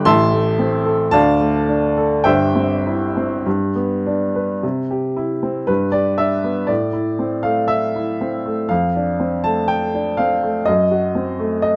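The recording has a dark, warm production with a moderate studio reverb. This romantic classical character piece for solo upright piano is lyrical and hopeful in mood, moving at a slow, flexible rubato in a duple metre. The piano sits up front with a clear, woody, natural tone, spanning from deep bass notes up into the high treble. The opening phrase passes through A minor, D minor and C over G before settling on G, and a new section begins at 4.6 seconds on C, moving through G and A minor to a D minor seventh over F. The harmony arrives on an F-sharp diminished seventh at 10.7 seconds, shortly before this passage, cut from a longer piece, breaks off at 11.8 seconds.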